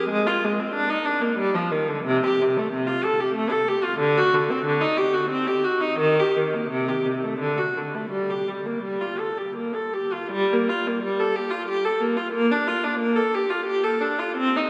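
A long cathedral reverb, ringing for about 5.3 seconds, surrounds this recording, made in a church or concert hall, and gives the music a grave, spacious air. A single bowed viola carries everything as a solo voice, its rich tone sitting up front yet carrying a faintly distant quality in the resonant room. Written in the manner of a baroque suite movement in G minor and 3/4 time, it moves at roughly 78 to 95 BPM with a free, rubato feel that keeps the line flowing. The player colours the melody with expressive vibrato and portamento, ranging from C3 up to A4. A new passage begins around 10.3 seconds, and the excerpt breaks off at 14.7 seconds, cut from a longer piece.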